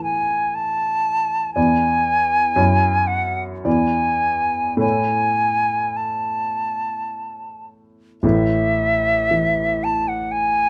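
Serene and tender, this romantic classical duo for concert flute and grand piano drifts at 50-60 BPM in a rubato 3/4, in A major and tuned to A4 = 441 Hz. The flute carries the melody between E5 and A5 with a pure tone, vibrato and soft attack, while the smooth, vintage-sounding piano accompanies from A1 to D5 with short sustain, both sitting up front throughout the 10.7 seconds. Captured dry by close, detailed microphones, the harmony moves through A5, E7 and F#5 chords before the opening phrase begins again at 8.2 s in this excerpt from a longer piece.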